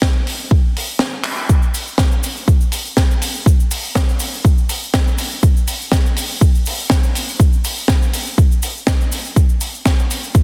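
Nu-disco with a sleek, groovy mood, this drum-led excerpt from a longer piece rides a light 16th-note swing in 4/4. A punchy, layered electronic kick sits up front with a tape-warm edge, joined by a tight funk kit of handclaps, hi-hat and a high-tuned snare that sounds acoustic and natural, as if caught in a small room. A short break arrives at 1.0 seconds, with a drum fill at 1.2 seconds. At 1.5 seconds a cabasa enters in the background, its tube-shaker rasp blurring into something close to a group handclap. Light studio reverb and a dense, heavily limited modern master keep the groove polished and forward.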